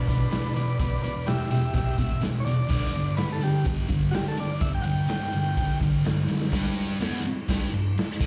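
A buzzy, overdriven combo organ and a thick, double-tracked fuzz guitar kick off this short, swaggering garage rock excerpt together. The vintage organ takes the lead with a solo line touched by light vibrato and slapback echo, while the picked, bright fuzz guitar grinds out a low riff up front. A raw drum kit joins almost at once, with a punchy kick, medium-tuned snare, crash and ride cymbals, all gritty and saturated with a rolled-off top. The harmony moves from E minor to a G power chord, and the organ drops out at 5.8 seconds, just before a drum fill at 6.3 seconds leads into a new section that carries on to 8.3 seconds. It sounds like a live club gig caught on cassette through the venue's PA, with a small room ambience and light club reverb adding to the rough, raw feel.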